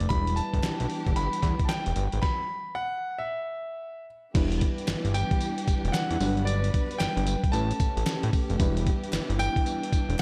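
A clear, intimate concert grand piano carries the melody up front in this slick, confident new jack swing excerpt at 113 BPM in E dorian, with a swung sixteenth-note feel and a stop from 2.2 to 4.3 seconds before the groove returns over Em7, Gmaj7 and A9. A thick, detuned sawtooth analog bass with a filter sweep and a gritty, compressed sampler-style drum kit, with its thumpy kick, fat snare, hi-hat, crash and tambourine, sit up front. Beneath them, a glassy, bell-like FM electric piano with chorus and slapback echo, a lush bowed string section in the background, and a very quiet, crisp group handclap entering at 0.6 seconds all fill out a big arena sound with recital hall reverb.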